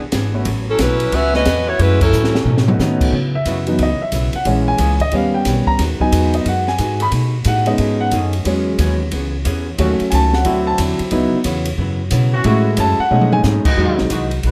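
Brassy and swinging, this big band jazz excerpt moves at 180 BPM in 4/4, with a vibrato-tinged saxophone section stating a brief melody up front before a band accent at 2.0 seconds and a drum fill from the open kit, whose high-tuned snare and boomy kick sit in a moderate studio reverb. From 3.1 seconds the key settles in C# minor and the clear, deep-voiced grand piano takes a solo over thumpy, woody pizzicato upright bass and a dark, clean hollow-body guitar in the background. Meanwhile, a trombone section with light vibrato adds sustained chords through rich harmonies such as C#m11, B13 and Emaj9.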